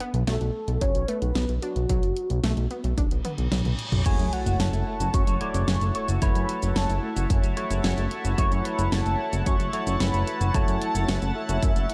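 A dark, warm, lightly reverberant production gives this driving, cinematic synthwave excerpt its character. A bright, warbling unison pluck spins delayed arpeggios at the start and drops out at 3.7 seconds, while a fat, saturated analog bass with sidechain pumping sits up front beneath a velvety synth lead carrying the melody through chorus, tremolo and tape echo. A punchy, layered electronic kick anchors a produced pop kit with a fat snare, hi-hat, shaker, crash cymbal and toms. From 3.2 seconds a drum fill, a reverse cymbal and a sub drop build toward an impact at 4.1 seconds, where the harmony moves from B7(no3) to F#m7. There a shimmering pulse-width pad pumps in with sustained chords, a bell-like tine electric piano adds clean stabs with delay, and a slightly broken-up, picked electric guitar plays a riff in the background with subtle chorus and delay.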